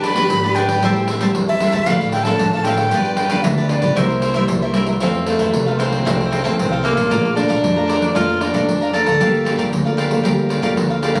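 A breathy silver concert flute leads this playful, joyful excerpt of samba and choro at 115 BPM in C major, its tongued, vibrato melody sitting up front with lifted highs until 4.7 seconds. The key then moves to F major at 5.0 seconds, where a soft-attack tenor saxophone takes a jazz-style solo that sounds distant and roomy yet up front, carrying to 9.7 seconds. Underneath throughout, a crisp picked cavaquinho, a full-bodied fingerpicked nylon-string guitar with audible finger squeak, a woody pizzicato upright bass and a jingly, distant pandeiro keep going, all captured on a phone in a studio with moderate reverb.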